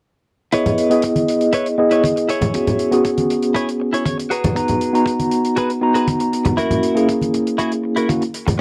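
A straight 4/4 pulse at 119 BPM drives this short nu-disco fragment in C# dorian. A tight, dry, mid-forward kick and a quiet hi-hat both carry cassette tape coloring, while low-tuned congas with hard hands and a bright, thin skin enter at 0.7 seconds. Up front, a tine electric piano plays the accompaniment through a combo amp with medium tremolo, sidechain pumping, analog delay, a low-pass filter and a filter sweep across the whole passage. A clean, picked electric guitar, recorded direct and compressed with subtle chorus, plays a riff and adds a short fill at 3.8 seconds. The chords move from C#m7 to E6, G#m7 and F#7 in a small, moderately reverberant room, giving a sensual, cosmic mood with a homemade tape grain.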